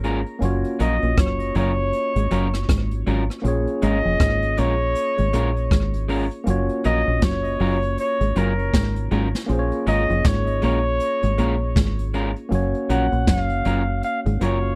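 Lovers rock reggae at a sweet, tender 79 BPM in F# major, swung on the 16ths, where a clear, vibrato-laden flugelhorn carries the melody from 0.8 s with tape echo over a boomy-kicked jazz brush kit, a round, punchy deep dub fingered bass, slightly broken-up guitar stabs through a small old amp, a dark, chorused and tube-saturated guitar riff tucked in the background from 0.4 s, and a clean tine electric piano with slapback echo, all cycling between F#maj7 and A#m7 in a dry, close 1970s-style studio sound with light reverb.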